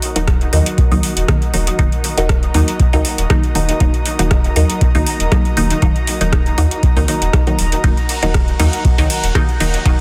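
Dub techno with a nocturnal, hazy mood, cut from a longer piece, where a tape-warm deep electronic kick and an overdriven kit of metallic hats, ride and rim click drive a round sine sub bass, muted phased chord stabs soaked in dub echo, an airy breathy pad pumping under sidechain, a warbling lo-fi pluck riff in the background and a resonant bubbling texture of random filter steps, all resting on a single minor chord under light reverb and a dense, heavily limited master.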